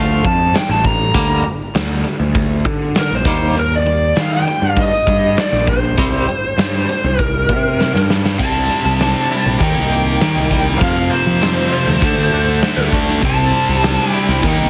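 A heavily compressed, radio-ready sound with light reverb frames this dark, angsty snippet of quiet-loud alternative rock in a straight four. A bluesy overdriven lead guitar, shadowy and distorted, carries the melody from the opening, while a clean, twangy electric guitar with tremolo picks arpeggios in the background. Underneath, a growly fuzz bass sits up front with overdrive, and a huge acoustic drum kit recorded in a hall adds a punchy kick, a medium-tuned snare, bright cymbals, hi-hat and crash. A drum fill at 7.8 seconds launches the second section at 8.4 seconds, where a thick, bright fuzz guitar riff enters up front. A second fuzz guitar joins the riff in the background at 13.2 seconds as the harmony moves through suspended and open power chords before the cut.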